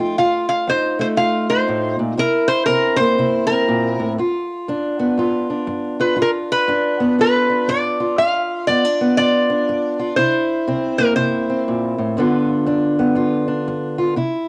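Acoustic country blues with a gritty, laid-back mood at 120 BPM in a swung 4/4, this short cut from a longer piece sets a metallic, nasal lap resonator guitar played with slide and fingerpicks carrying the melody up front until 11.6 seconds over a boxy, fingerpicked acoustic archtop guitar that holds down the accompaniment with cassette-tape coloring through chords moving from F7 to C7 and G7, all captured as a home cassette recording in a small room with light reverb.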